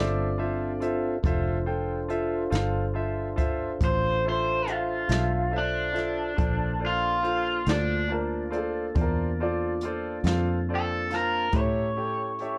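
Slow blues in 12/8 at 47 BPM in D minor, mournful and brooding, where a woody upright piano with audible action noise and a brilliant concert grand open over a fingered electric bass that is round and foam-muted, a key-clicking tonewheel organ through a slow rotary speaker, and a brushed jazz kit with a boomy kick entering at 0.8 seconds, before a scooped, overdriven electric guitar takes the melody at 3.8 seconds across Dm7, Bbmaj7 and A7, all in a small room and colored by worn, warbling cassette tape with pitch drift in this short cut from a longer piece.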